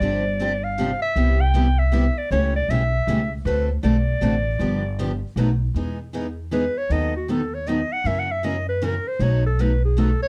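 Charming and swinging, this brief cut from a longer jazz manouche piece moves at 157 BPM in 3/4, with a warm, vibrato-laden clarinet carrying the melody up front over a chain of seventh chords before settling into E major at 5.8 s, where it takes a solo. Beneath it, a pizzicato upright bass with woody, thumpy gut strings sits prominently, while two picked steel-string acoustic guitars accompany: one bright with fresh strings and audible finger squeak, the other boxy, parlour-toned and set in the background. The production is dark and warm with light reverb.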